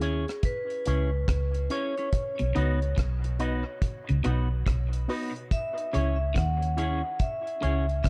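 Dub reggae in C# minor at 71 BPM with a heavy, spacious mood, this short excerpt pairs a ringing, close-miked vibraphone melody with dub echo with a bright, twangy envelope-filtered guitar in spring reverb, a round, foam-muted vintage bass and a dry, rolled-off deep reggae kit of kick, hi-hat and rim click up front, while from 2.4 seconds a slightly broken-up guitar riff and, a moment later, detuned sawtooth chord stabs with phaser sit in the background over a dark small-room production moving from C#m to B and back.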